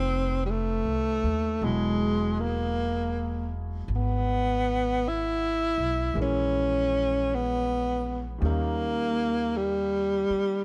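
Swung eighths at a slow 53 BPM in 4/4 carry this intimate, romantic jazz ballad fragment, where an up-front tenor saxophone leads with a breathy, mellow subtone, vibrato and scooped notes over a warm, natural grand piano with deep bass resting in the background and a woody, thumpy pizzicato upright bass on gut strings, all touched by light reverb as the harmony moves from F7#11 to Emaj9, A#m7b5 and D#7 across roughly 10.6 seconds.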